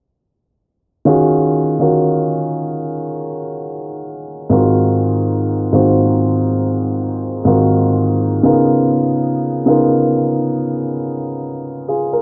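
R&B in a moody, longing vein, this brief cut from a longer piece features a solo grand piano, warm and natural and placed up front, moving through Ebm11, Ab13 and Db13 chords between 1.1 and 12.2 seconds. A light reverb surrounds the piano, while the dry, gritty hardware sound is shaded by a low-pass filter that sweeps across the passage.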